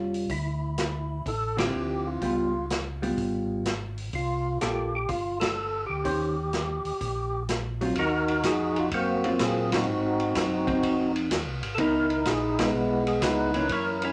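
Soul jazz organ trio excerpt with a greasy, bluesy swing at 125 BPM, where an up-front, fat, lightly overdriven percussive organ carries the melody through a slow rotary speaker over a round, dark organ bass with chorus vibrato, a clean, compressed hollow-body guitar comping on chords like Dm9 and Ebm69, and a small-room drum kit with dark cymbals and a punchy kick, the band hitting accents at 1.5, 5.3 and 9.6 seconds in a wet studio reverb.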